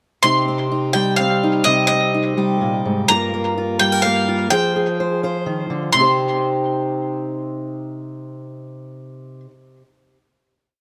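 Indie folk in C minor at 126 BPM in a straight 3/4, yearning and wistful, this short whole piece sets a bright bowl-back mandolin melody, built from motif-based sentence phrases, over a warm, syncopated fingerstyle steel-string acoustic guitar with fresh strings, both up front and both touched by analog delay. The echo-heavy mix sits in light reverb, moving through Cm, Gm7 and Fmadd9 in a brief verse before coming to rest on a final C minor chord at 5.9 seconds, with the mandolin stopping at 9.4 seconds and the guitar at 9.5.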